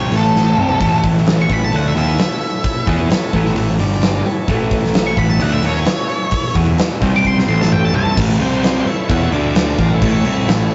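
Over a straight 4/4 groove, a huge arena drum kit sits up front with a punchy kick, fat snare and bright cymbals, breathing in a pumping room and kicking off with a fill around 0.4 seconds. This gritty, swaggering slice of blues rock power trio and southern rock, cut from a longer piece, is anchored by a fuzz picked electric bass that is overdriven and warm. Behind it, a double-tracked fuzz guitar plays a dark, distorted picked riff, while an overdriven tonewheel organ holds shouting sustained chords with key click through a slow rotary speaker. An octave-fuzz lead guitar with slapback echo takes a solo from the start and stops at 8.2 seconds, as another drum fill ends, and the music moves into a new section built on A, C, A, D and A chords. The whole thing has the rough feel of a rehearsal-room recording, with moderate stone room reverb, warm saturation and a dull, rolled-off top end.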